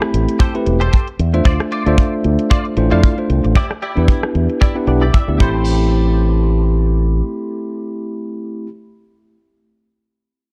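In a small room ambience, this sleek, cosmic nu-disco excerpt centres on an up-front, bell-like tine electric piano with sidechain pumping, slapback echo and a filter sweep over its first 5.7 seconds, moving through Am7, Dm7 and Em7 chords. A dry, tight acoustic kick and a punchy fingered bass with an envelope filter and tube saturation carry a lightly swung groove, while a layered electronic house kit with metallic, low-passed hi-hats, rim click and crash cymbal stops at 5.5 seconds. A twangy, compressed clean guitar recorded direct picks a riff with ensemble chorus and slapback echo, adding a fill from 4.6 seconds.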